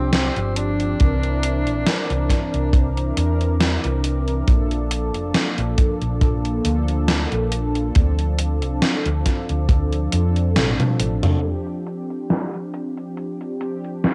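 A hazy, cassette-worn home recording in a small room with light reverb opens this woozy vaporwave excerpt at a slow 69 BPM in 4/4, its sixteenths nudged by a gentle swing. A breathy, whispered tenor saxophone offers an intimate jazz-style phrase with scooped notes and vibrato, heard only in the first 3.2 seconds, bathed in tape echo. Mellow synth brass, full-bodied and detuned with analog chorus, carries the chords from G7sus4 through C9, Bbmaj7 and Dm7, while a warbling, nostalgic pad with 12-bit sampler grit sits dark and distant in the background. A round, punchy hollow-body bass plays up front until 11.2 seconds, joined by a tight, rolled-off acoustic kick and a gated 80s drum machine whose hats, snare and toms are muffled by low-pass filtering. A drum fill at 10.6 seconds leads into a closing section back on G7sus4, where a filter sweep washes over the drums.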